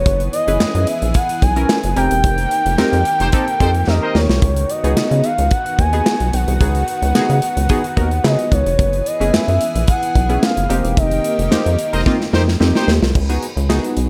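Light reverb and a small-room ambience give this short cut from a longer early-eighties boogie funk piece a close, polished sound, with a smooth and danceable mood in a straight 4/4. A rubbery, hollow square-wave bass sits up front from the start, bouncy and nasal with a resonant filter pluck, beside a modern studio drum kit whose punchy kick, medium-tuned snare, handclaps, hi-hat, bright cymbals and crash are wrapped in gated reverb. A funky sawtooth polysynth comp enters at 0.5 seconds with filter sweeps and chorus, while a lush, detuned unison pad holds sustained chords with chorus in the background. Over this, a gliding portamento lead carries the melody with a soft attack, vibrato, chorus and slapback echo. A tight, vintage-toned horn section with light vibrato adds a brief second line during the band accents, first at 3.2 seconds and again near 11.9 seconds, as drum fills push into the next bar over a harmony of suspended ninth chords moving from Gb9sus4 to F9sus4 to Db9sus4.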